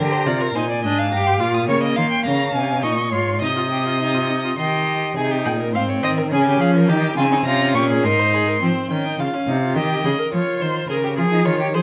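Classical baroque-style fugue for string quartet, cut from a longer piece, moving at 105 BPM in 3/4 with a straight feel in Ab major, its mood both driving and contemplative. The first violin carries the melody high in its range, its bowed tone rich and focused with vibrato yet set back at a distance, and it stops at 8.6 seconds, while the other three play on to the end. A second violin, up front and similarly full-bodied with vibrato, traces a second line beneath it, while a clear, distant viola supplies accompaniment in its middle register. The cello anchors the bass, bowed with a rich, focused tone and vibrato, close to the listener. The harmony wanders through minor and half-diminished colours such as Dm7b5 and Cmadd11 before reaching Ab, and a contrasting middle passage gives way to a return of the opening material. A moderate recital hall reverb surrounds the ensemble with a natural sense of space.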